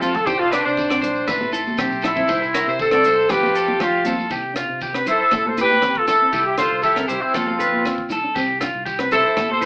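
Joyful and carefree, this highlife guitar band excerpt has a vintage, tightly voiced horn section up front carrying the jazz-style melody with light vibrato. A twangy, slightly broken-up electric guitar picks arpeggios beside it, while a thumb-plucked nylon-string guitar sits in the background. A mellow combo organ holds very quiet chords until 4.3 seconds, and a round, punchy fingered bass plays alongside a dry cocktail kit with hi-hat, kick and rim click. Ringing, high-tuned congas and a grainy, distant shekere fill out the band, which plays live in one room with an AM radio sound.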